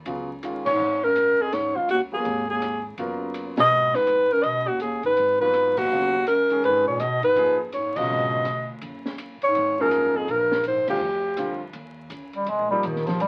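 A swinging 4/4 groove at 164 BPM drives this short modal jazz passage in Db mixolydian, cut from a longer piece, with a spiritual, open mood. A compact cocktail drum kit sets the swing with ride, hi-hat, rim clicks and a high-tuned snare, its punchy kick and rolled-off top giving a dark, smooth feel, while a woody pizzicato upright bass sits in the background. A warm concert grand piano with deep bass voices the Db9sus4 harmony, later moving to Bb69, as the full band hits several accents along the way. From 0.7 seconds a breathy, whispered alto saxophone carries the melody up front, close and intimate, with scooped notes, vibrato and a soft subtone, while a mellow bass clarinet with a smooth top plays a second line alongside it. At 11.7 seconds the harmony shifts to Eb9sus4 and the bass clarinet takes a brief solo to the end, all heard through a small room's ambience and the crackle of a very old 78 rpm record.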